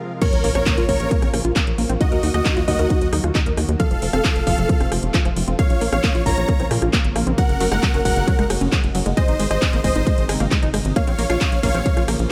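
The rhythm drives a straight 4/4 pulse, with a punchy, tape-warm electronic kick anchoring a house kit of handclaps, rim clicks, metallic hats, ride and crash, the hats and cymbals pumping against the sidechain. This bittersweet, emotional uplifting trance passage is cut from a longer piece and opens on a brief break before the drop lands at 0.2 seconds with a very quiet electronic impact that lasts until 2.0 seconds. A tight, saturated sequencer bass pumps underneath, while a detuned sequenced synth spins arpeggios with chorus and dub echo in the background, and a lush, bright unison pad holds sustained chords through chorus and phaser. Leading the melody is a huge, thick, compressed supersaw with vibrato, pumping and trailing dub echo, joined by a very quiet unison pluck with a moving notch that carries a second line. The chords move from Bbm through Ebm and F back to Bbm, then on to Gbadd9 and Ab before returning to Bbm, all set in a dry mix with little reverb.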